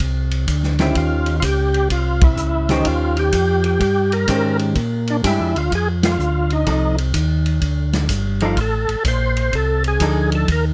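Soulful and greasy, this soul jazz organ trio excerpt swings at 126 BPM in 4/4, with a smooth, clean tonewheel organ bass line through a slow rotary speaker and a vintage acoustic drum kit with a tight kick and rolled-off top laying down hi-hat, snare and ride from the start. At 0.8 seconds a thick, lightly overdriven percussive organ with key click and chorus vibrato takes the melody up front, while a picked, compressed hollow-body electric guitar adds clean accompaniment over chords such as Bb6 and F13. Band accents land at 2.1 and 6.0 seconds, and the close, detailed sound carries a touch of light reverb.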